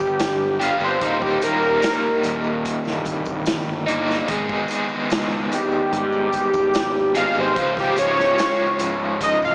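Psychedelic rock with a trippy, mysterious mood, cut from a longer piece, where a fat, detuned sawtooth synth lead with a sub octave, vibrato and analog delay takes an up-front solo across the chords G, Eb, Abm and Db. Beneath it, a double-tracked overdriven electric guitar with tremolo plays a riff, while a round, dark fuzz bass and a vintage acoustic drum kit with a punchy kick and rolled-off top hold the low end, joined by a very quiet, jingly tambourine from 0.2 seconds. The dreamy mix is soaked in lush hall reverb yet has a small-speaker sound.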